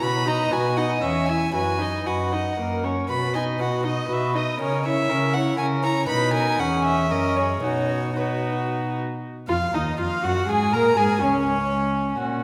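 Lively and cheerful, this quick classical-period movement for string quartet, cut from a longer piece, moves at 119 BPM in 3/4 with a rubato feel in B major. A close, up-front violin carries the melody with an airy bow, while a darker, more distant second violin plays the second line, a reedy viola supplies accompaniment, and a cello with light vibrato anchors the bass, the players sounding with period-style gut-string tone. The quartet sits in a wet concert hall reverb, and the harmony shifts from B-centred progressions to a D#madd9 chord as a new section begins at 9.2 s.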